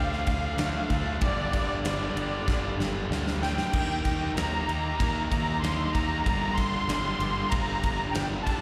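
A straight 4/4 pulse at 95 BPM drives this menacing hard rock excerpt in G minor, with a gated 80s drum kit entering at 0.1 s to hit kick, medium-tuned snare, crash and ride up front in a polished, bright stone room sound. A punchy fuzz picked electric bass sits up front beside it, overdriven and amped from G1 to Eb2. Three electric guitars play the riff from G2 to Eb4: a raw garage guitar in the background, overdriven and double-tracked with slapback echo; a tight distorted guitar, also in the background and carrying slapback echo; and a scooped high-gain guitar, very quiet beneath them. Over the top, a reedy musette accordion carries the melody between D5 and C6, its wet tuning shimmering through a slapback echo. The chords move from Dm to Gm, then Eb at 3.7 s and back to Gm at 6.3 s, with a drum fill from 2.5 s. The whole track sounds like a live gig heard through the venue's PA in a small room, with a recital hall reverb around it.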